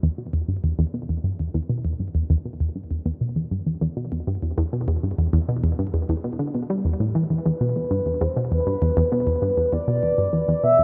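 Ambient excerpt in E minor at 99 BPM, mysterious and hypnotic, where a tight, driving sequenced synth riff with detuned sawtooth bite and a filter sweep runs through the full 10.8 seconds on a held Em chord, joined at 7.3 seconds by a mellow, round horn-like synth lead carrying a vibrato-tinged melody through lush chorus and delay, all bathed in a huge ambient reverb with an 8.0-second tail.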